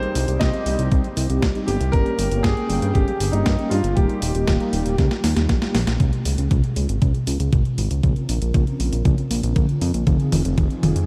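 A fat, detuned sawtooth analog bass sits up front in this bittersweet, nostalgic italo disco piece, cut from a longer track, with tube saturation and a filter sweep adding grit. It moves at 118 BPM in a straight 4/4 alongside a thumpy, tape-toned electronic kick re-recorded in a large room and a clean 12-bit drum machine whose overdriven hi-hat, medium-tuned snare and toms sound close and present. Mellow synth brass plays dark, round stabs with chorus, ring modulation and a diffuse ambient delay over chords that move from Cm through Gdim and Eb to Db, Bbmadd9 and Fm7. A warm concert grand piano with deep bass carries the melody until 5.4 seconds, its notes trailing into delay, and a drum fill at 5.0 seconds leads into the second section at 6.0 seconds. The mix is dreamy and soaked in a moderate cathedral reverb, with vinyl crackle underneath.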